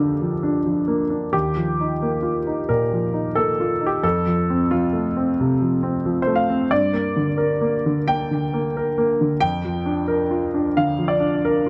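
Dark, intimate studio sound with a short, wet room ambience frames this wistful neoclassical minimalist fragment, cut from a longer piece, in which a clear, up-front concert grand piano with deep bass, natural tone, short sustain and a touch of analog delay plays alone for 11.7 seconds at a rubato 89 BPM in 4/4, moving from Bb/F through Ebadd9, F and Gm before returning to Bb/F.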